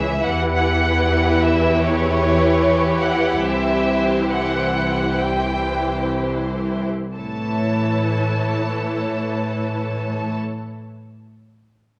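Uplifting and moving, this short cut from a longer cinematic, emotional film score for orchestra unfolds in free time and slows through its first 7.2 seconds, as a distant, smooth violin section sings the melody over a second violin line with a lush, smooth top, a close, focused viola section in accompaniment and an up-front cello section on the bass, all bowed with vibrato under moderate scoring-stage reverb and the worn, warbly pitch drift of old cassette tape, moving from Em to C before arriving on A at 7.2 seconds.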